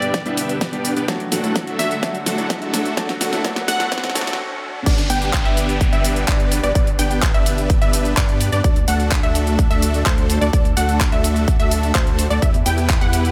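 A huge, thick supersaw riff leads this euphoric, triumphant festival progressive house excerpt in G major at 127 BPM, pumping with the sidechain and trailing tape echo as a filter sweep moves across it through the build-up. A punchy electronic kick sits up front beneath a layered pop drum kit with a fat snare, handclaps, hi-hat, shaker and crash, which plays a fill during the build. Above them ring a glassy, crystalline wavetable pluck melody with chorus, a bright concert grand piano in the background, and a riser and downlifter, while a lush, detuned unison pad holds sustained chords throughout. After a short break at 4.4 seconds, the drop arrives at 4.9 seconds, bringing in a saturated, deep sub bass and a decaying sawtooth unison pluck playing arpeggios, both pumping with the sidechain. The chords move between G and D before reaching E minor near the end, and light reverb gives the mix a polished sheen.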